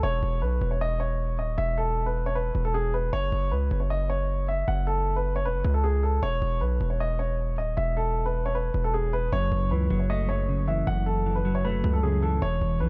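A half-time trap groove in 4/4 drives this short hip hop excerpt, anchored from the first moment by a hard-hitting 808-style bass that sounds punchy, heavy and saturated, its sine body topped with a noise layer, a fast attack and a decaying tail. Up front beside it, a baby grand piano carries the melody in a mellow, filtered tone, while the harmony moves from E5 at the opening to F#5 at 3.1 seconds. At 9.3 seconds a semi-hollow electric guitar joins as accompaniment on an F#m7, its clean, fingered hollow-body sound softened by a lush chorus and a low-pass filter. A small room reverb frames the dark production, and the eerie mood holds until the cut at 12.9 seconds.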